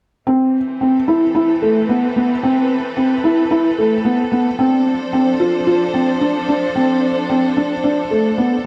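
A wet echo chamber wraps this short electronica passage in a roomy, lingering reverb, lending it a cinematic, hypnotic air. Up front sits a felt-muted upright piano, soft and intimate, its mellow riff carrying a touch of tape echo and the audible clatter of its action. Behind it, a studio string section holds sustained bowed chords, its lush ensemble tone focused and smooth on top with vibrato, mixed well beneath the piano. Both parts enter together at the start, and the harmony drifts from Amadd9 to F6 and then to Dm7/F. The piano drops out at 8.5 seconds, leaving the strings to ring on briefly before the cut.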